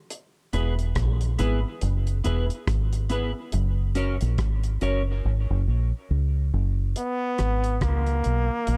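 A dark, warm small-room production frames this short cut from a deep, hypnotic dub reggae piece at 70 BPM in G# minor, with a swung 16th-note feel. A cloth-damped drum kit gives a dry, thuddy pulse of tight kick, hi-hat and rim click, its top rolled off, while a round, foam-muted fingered electric bass sits up front, low and direct. A clean picked electric guitar adds dark accompaniment through a lush chorus and dub echo, over chords moving from E to F#. The opening is a sparse break that runs to 7.0 seconds, and the drums drop out within it at 5.2 seconds. The harmony then lands on G# minor as the drums return and a brilliant, forceful trombone takes a punchy solo, its vibrato-laden line carried up front on dub echo.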